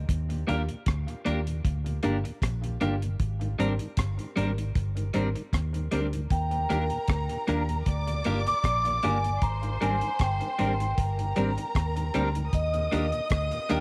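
A romantic, sweet lovers rock reggae excerpt opens on a dark, round, foam-muted fingered electric bass up front, joined almost at once by a dry reggae drum kit with a tight kick, hi-hat and rim click. A mellow tonewheel organ with chorus vibrato and slow rotary speaker, and an intimate grand piano with audible action noise and tape echo, sit in the background beneath clean, compressed electric guitar stabs bathed in lush chorus, all over a lightly swung groove. At 6.3 seconds a vibraphone with soft mallets carries the metallic, ringing melody through tape echo, while a studio string section adds a bowed, sul tasto second line with soft attack and vibrato.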